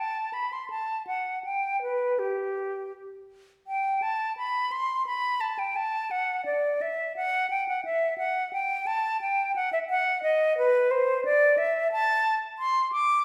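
Radiant and dance-like, this short cut from a longer baroque-style fantasia in G major moves in a rubato 3/4 at roughly 79-90 BPM. A lone concert flute carries everything, its airy, bright tone shaded with vibrato and soft attacks as it ranges from G4 up to D6 in a close, expressive, up-front voice. A recital hall's lingering reverb of about 1.4 seconds surrounds the playing, lending a sense of listening from further back in the room, as the opening idea returns at 3.7 seconds and carries through to 13.2 seconds.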